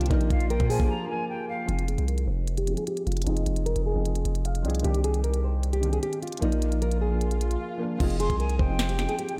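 An eerie, hard-hitting trap piece opens with nearly its full band at once. An up-front electronic kit hits with a knocking kick, sharp snare, crisp hats and crash, while a deep, sine-toned 808 bass with a fast attack and long decay sits just as close. Over this, a classical nylon-string guitar carries the thumb-plucked melody, finger squeaks and all, through a low-pass filter and delay. A felt-muted upright piano adds dark, intimate accompaniment with audible action noise, a pure flute with vibrato plays a second line with delay, and a warbling vintage pad holds chords in the background with ensemble chorus. At 152 BPM in a half-time 4/4 feel and F dorian, the chords move from Bb to Fm7, Cmadd9 and back to Bb, and distant, mellow brass stabs appear briefly near the start before a break, after which the pad and flute drop away while a filter sweep runs through the long middle section. An electronic swell enters at 6.5 s leading into a second short break, and the flute returns at 8.2 s over Fm7, all set in light reverb with a small-room ambience.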